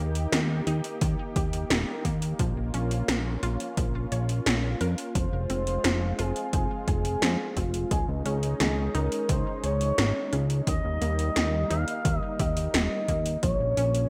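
A straight 4/4 pulse at 87 BPM drives this nostalgic synthwave piece, where a detuned, chorused unison pad sustains chords with sidechain pumping over Eb, Bbm, Fm and Dbsus2, a very quiet, bright pluck spins vintage sawtooth arpeggios, a fat, up-front analog bass anchors the low end, tape-toned pad drums bring a gated snare and metallic hats, a punchy electronic kick enters at 1.0 s, and from 5.2 s a smooth, expressive synth lead with vibrato, subtle chorus and delay carries the melody, all set in a bright 1980s-style digital production with light reverb.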